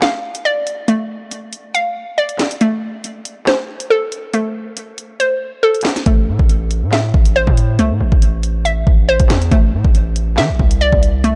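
A half-time drill groove at 139 BPM in 4/4 drives this cold, tense hip hop clip in A minor, built on a knocking kick, a sharp snare, bright hi-hats and handclaps from an electronic kit sitting up front. Over it, a hollow, bouncy square pluck plays arpeggios from the start, its detuned tone colored by ring modulation, a filter sweep, chorus and digital delay. The harmony moves from F6/A to Am at 2.6 seconds and later to E7sus4/A. At 6.1 seconds a heavy, saturated 808-style bass arrives with a distorted, aggressive growl and a noise layer, hitting with a fast attack before decaying. The dark production is wrapped in digital ambience, and the clip is cut from a longer piece.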